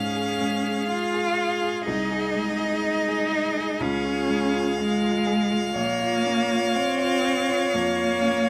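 A moderate stone room reverb gives this brief passage, cut from a longer piece, a gentle sense of space. It is a slow, tender romantic movement for piano quartet in Db major, moving at about 62 BPM in 4/4 with a freely breathing rubato feel. A rich, smooth violin carries the melody with vibrato, while a focused, bowed cello sits up front, singing a second line beneath it. A close, clear viola and a worn-sounding baby grand piano fill in the accompaniment, the piano spanning from deep bass notes up into the violin's register. The harmony moves from Db to Ab/C, back to Db, and on to Bbm at 5.8 seconds, with all four players sounding together through the full 8.5 seconds.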